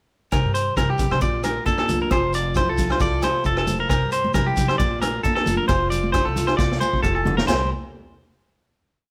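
Danceable and carefree, this short highlife guitar band piece in C mixolydian swings lightly at 134 BPM, with an up-front, twangy clean electric guitar ostinato over a boxy, bright parlour acoustic guitar picking syncopated fingerstyle, a woody pizzicato upright bass riff, and a punchy vintage drum kit with dark cymbals. Ringing agogo bells, grainy shekere and thin-skinned congas, which join at 0.8 s, sit in the background, and the band plays live in a moderate stone room until a drum fill at 6.6 s leads to a final C7 chord at 7.5 s.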